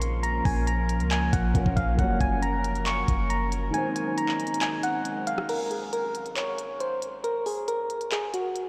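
A menacing, hard-hitting trap hip hop excerpt at 137 BPM in a half-time feel, where a gritty 12-bit trap kit with a knocking kick and crisp hats drives over a deep, boomy 808 bass, an intimate dark grand piano with audible action noise, a moody detuned ambient pad and up-front, round electric-piano-like synth keys carrying the melody with chorus and delay; a very quiet, mellow brass section stabs briefly at 2.0 seconds, the kick falls silent at 3.7 seconds, and from 5.5 seconds a break leaves only the keys and drums in a dreamy, reverb-soaked mix with a faint mains hum.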